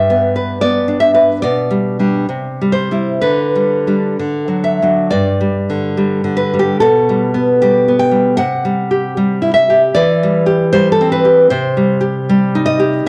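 A rubato pulse in 2/4, moving at roughly 60-79 BPM, carries this tender, nostalgic romantic piece for solo classical guitar in G major. The bright, fingerpicked nylon-string guitar sits up front, ranging from G2 to G5, and its phrase in G repeats from 5.1 s before the harmony darkens to C minor at 11.5 s. A moderate recital-hall reverb surrounds it, while a worn cassette-tape character adds warbly pitch drift to this short excerpt from a longer work.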